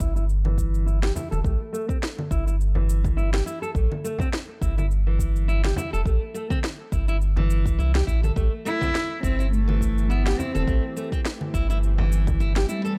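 A round, sine-like sub bass sits up front in this mystical organic downtempo excerpt, pumping with sidechain compression beneath the deep electronic kick at 104 BPM in 4/4 with a light swing on the sixteenths. Over it, a fingerpicked nylon-string guitar with fresh strings and audible finger squeak plays classical-style arpeggios on an Am7 chord in A minor, shaped by a filter sweep and tape echo. An electronic shaker, congas and a sharp snare fill out the produced groove, while a soft-handed frame drum enters at 1.2 seconds in the background. A dark, woody cello, bowed sul tasto by one player with vibrato and tape echo, comes forward with a close, up-front melody from 8.7 seconds. Shortly after, at 9.2 seconds, a tense, bright, string-like drone of detuned sawtooth unison with a noise layer swells in slowly behind it, pumping and bathed in its own reverb, all within a dry, gritty small-room sound.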